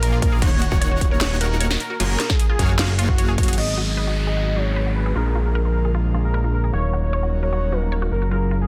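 A lush, emotional future bass drop at 152 BPM in a half-time feel opens on a velvety synth lead carrying the melody over bright, warbling unison pluck arpeggios, a huge detuned supersaw riff and a fat, saturated analog bass, all pumping with sidechain and the upper synths trailed by digital delay. A trap kit with a sharp snare and metallic hats and a punchy, up-front electronic kick drive this opening until a drum fill at 3.4 seconds hands over at 3.6 seconds, where a worn, slightly out-of-tune, lightly overdriven electric piano, an airy, breathy pad and an electronic downlifter take over above the continuing lead, pluck and bass. Chords move from D#m7 through F#maj9, G#m7 and A#7 under a dense, heavily limited modern master with little reverb.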